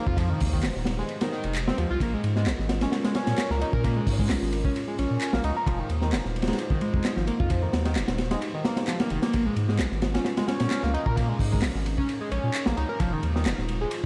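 Gritty and raw, this breakbeat excerpt rides a swung, crunchy acoustic drum kit with a high-tuned snare and tight kick, up front beside a deep, thick saturated sub bass, while overdriven electronic handclaps with dub echo sit lower in the mix. A screaming, guitar-like synth lead plays a distorted riff with chorus, phaser, vibrato and a cassette-tape tint, as a moody analog pad holds sustained chords in the background, pumping against the beat, over a cycle of Fm7 and Bbm7. The echo-heavy mix sits in a small room with moderate chamber reverb and a layer of vinyl crackle.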